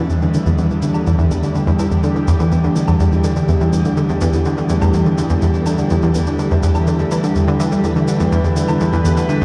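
A warm, round analog pluck riff sits up front from the first moment, detuned and drenched in chorus and delay, over a bright, full-bodied sweeping pad of detuned sawtooth and sub-octave sine chords that fades in with a slow filter swell, while faint overdriven shaker and woodblock, echoing with delay, fade in from 0.1 seconds, all washed in a long shimmer reverb and the boom of a bare, cavernous room, giving this cut from a longer piece of sequencer-driven space music a cosmic, mysterious air.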